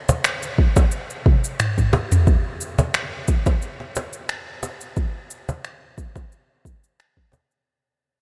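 An overdriven electronic kick drum sits up front in this short downtempo cut from a longer piece, its soft, produced thump carrying the grit of a re-recording in a small room along with studio reverb. The meditative, earthy groove moves at 89 BPM in 4/4, with a gentle 54% swing on the sixteenths. An electronic afro-pop drum kit, also placed up front, adds finger snaps, shaker and toms, coloured by its own studio reverb. Beneath these, a woody acoustic cajon played with hard hands brings a faint snare rattle and the close feel of a small room. A drum fill runs from 1.3 to 2.3 seconds, after which the music fades out until it ends at 7.7 seconds, all under a light overall reverb.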